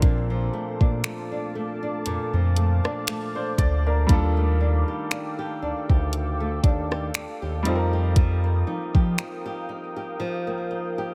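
A soft, electronic R&B drum kit anchors this moody, longing contemporary R&B piece at a slow 59 BPM with a lightly swung sixteenth-note feel, with every part entering together from the first beat. Its soft kick, hi-hat, finger snaps and rim clicks sit up front beside a smooth, mellow synth bass that mixes sawtooth and square waves with a moving notch. A fingerpicked acoustic flamenco guitar plays arpeggios through a digital delay, while a clear, slightly worn grand piano supplies accompaniment. High above, a deep, warbling vintage pad holds sustained chords, its detuned unison sawtooth and sine layers softened by chorus and built-in reverb. The harmony moves from Bbmaj7 to Ebmaj9#11 and then F9sus4 in a dry, close-sounding mix; the bass drops out at 9.2 seconds and the drums at 9.4 seconds, leaving the guitar, piano and pad, with a brief piano fill at 10.7 seconds in this section cut from a longer piece.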